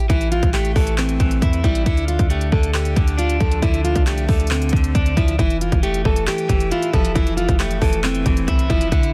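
A half-time trap beat at 136 BPM, with crisp hats, handclaps and a hard-clipped kick sitting up front, drives this melancholic, menacing hip hop excerpt, where a deep, boomy sine 808 anchors a fingerpicked plugged-in steel-string acoustic melody and a slightly broken-up picked electric guitar moves through Am, Dm and Fmaj7 in a dry, dense, heavily limited mix dusted with vinyl crackle.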